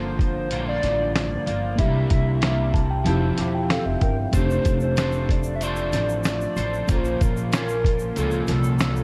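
A warbling, nostalgic lead with a square-and-sawtooth edge and a sub octave leads this sunny bedroom pop excerpt at 94 BPM in F major, carrying the melody through analog chorus and tape echo. Beneath it, a slightly broken-up, twangy electric guitar drifts in pitch under its own chorus, while a reedy, mellow electric piano sounds through built-in speakers with a cassette tint and plays a fill from 2.4 to 4.3 seconds. A woody, pizzicato upright bass gives the low end a thumpy acoustic body. From 0.2 seconds a compressed, gritty boom bap sampler-style kit sits up front, its pitched-down thumpy kick, medium-tuned snare and hi-hat carrying a tape-warm grain. At 4.3 seconds a grainy, bright egg shaker slips in quietly in the background as the harmony moves from Gm7 and C7 toward F6 and a closing Bbm, all in a dry cassette-tape sound.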